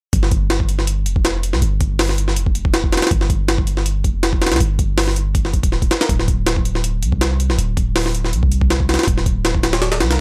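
Drum and bass with a jungle edge at 161 BPM, this atmospheric, raw drop runs from 0.1 to 10.2 seconds and pairs a gritty, pitched-up, compressed jungle sampler-style drum kit, with its thumpy kick, high-tuned snare and hi-hat, overdrive and studio ambience sitting up front, against a deep, mellow 808-style sine bass whose long notes hit with a fast attack and then decay, all in a dry mix with little reverb.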